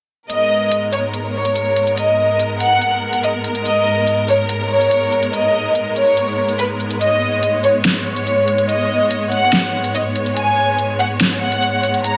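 Opening at 0.3 seconds on a G#madd9 chord, this heavy, aggressive wobble dubstep excerpt in G# minor at 143 BPM with a half-time feel sets an up-front, floating violin section melody, played sul tasto with a soft attack and digital delay, over lush, distant symphonic strings sustaining bowed chords with vibrato, while a layered electronic drum kit drives hi-hat and a huge overdriven snare, all in a small room with light reverb.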